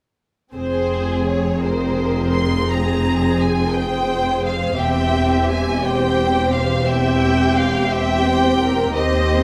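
A wet recital-hall reverb surrounds this short excerpt of a slow romantic movement for string orchestra, cut from a longer piece in F minor and moving in a rubato 12/8 at 58 dotted-quarter beats per minute. Up front, a focused violin section carries the melancholic, yearning melody with vibrato, while a second violin section adds a lush, soft-attacked second line, entering at 0.6 s. The viola section supplies smooth, even accompaniment, also placed up front. Beneath them, a close cello section and a clear double bass section, both bowed with vibrato, hold the low end. The harmony rests on F minor before shifting to C over E at 4.8 s, and all the strings play together until 9.4 s.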